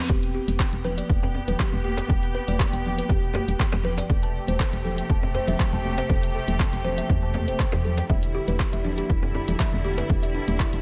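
Warm and spiritual, this afro house excerpt moves at 120 BPM in a straight 4/4, with a punchy, overdriven electronic kick and an overdriven deep house kit of handclaps, hi-hat and shaker driving it from the start. A woody, round FM bass and a hollow, thumbnail-plucked kalimba playing arpeggios with gritty 12-bit sampler texture and digital delay both pump against the kick, while a rich, biting symphonic string section sustains chords moving from G/E to Am7/E and then Em7 at 8.1 seconds. Bright, high-tuned congas sit distant in a large room behind a deep, close and very quiet djembe, all wrapped in studio reverb.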